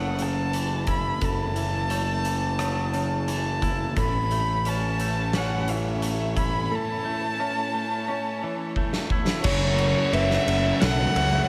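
In a straight 4/4 pulse, this brooding, cathartic post-rock passage sets a woody, sul tasto violin melody with slapback echo up front over fuzz-drenched overdriven bass, twangy clean guitar arpeggios and a mellow felt-muted upright piano in the background, driven by an oversized low-tuned drum kit with a fat snare and dark cymbals; a lush, very quiet studio string section adds sustained chords from 4.0 s, and after a drum fill a bright distorted guitar riff enters at 9.4 s, the whole passage set in concert hall reverb for a big arena sound.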